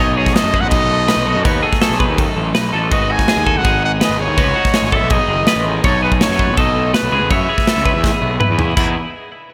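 A straight 4/4 pulse anchors this playful, intricate stretch of math rock and Midwest emo, with a polished acoustic drum kit arriving at 0.3 seconds and sitting up front with a punchy kick, a medium-tuned snare, crashes and toms, then rolling into a fill at 8.0 seconds. Beneath it, a fuzz-drenched picked electric bass growls up front with overdrive, while a clean twangy electric guitar sits scooped and warm in the background, colored by tremolo and slapback echo. A bright, compressed twelve-string electric guitar spins arpeggios through slapback echo and digital delay. Over the top, a clear solo trumpet carries the melody in a smooth, pop-style voice with vibrato, also trailed by slapback echo and digital delay. The harmony moves from B7 through G#m7, B9 and C#m7 before landing on Emaj7, and a lush hall reverb gives the cut a big arena sound.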